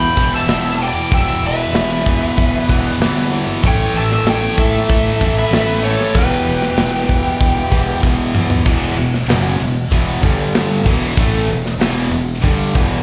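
A tight metal drum kit sits up front in this heavy, driving hard rock excerpt at 95 BPM in E minor, its tight kick and medium-tuned snare ringing in a big room. Two dark lead guitars carry the top until 8.0 seconds: one through a small cranked amp plays the melody with overdrive, slapback echo and analog delay, while an octave-fuzz guitar adds a distorted second line beneath it. Three picked rhythm guitars hold the riff in the background throughout, an overdriven electric, a double-tracked high-gain guitar and a hollow-body semi-hollow, all bright and touched with slapback echo. A growling fingered bass, overdriven and punchy, anchors the low end. A drum fill from 8.0 seconds leads into a new section at 8.7 seconds built on E5, G5 and Em, and the whole performance comes across as a live gig heard through the venue's PA, bathed in club reverb.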